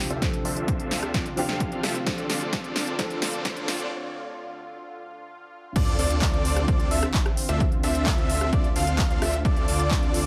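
A huge, airy supersaw riff carries this powerful, euphoric progressive house cut at 130 BPM in D minor, filtered, pumping and echoing over a Dm7 chord. A dark background piano and a lush chorused pad sit beneath while the big-room kit, with its punchy snare and crisp hats, runs a fill into a break at 3.9 seconds, joined almost at once by an overdriven, layered kick and later by a very quiet riser and sub drop. At 5.8 seconds the drop lands with an impact as a nasal unison lead plays arpeggios and a thick, saturated detuned saw bass holds D2, all set in light digital ambience.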